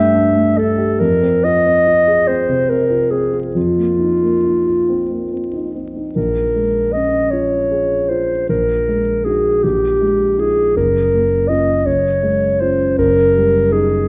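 A dusky, smooth-topped clarinet carries the melody up front in this hazy, mysterious impressionist duo, with a mellow concert grand supplying deep-bass accompaniment as the pair drift through a rubato 6/8. The harmony wanders through suspended and extended chords, shifting at 6.2 seconds into a second passage that settles onto Gb-based colours before the cut ends at 14.1 seconds. A moderate scoring-stage reverb, vinyl crackle and faint mains hum wrap the warm, shadowy production.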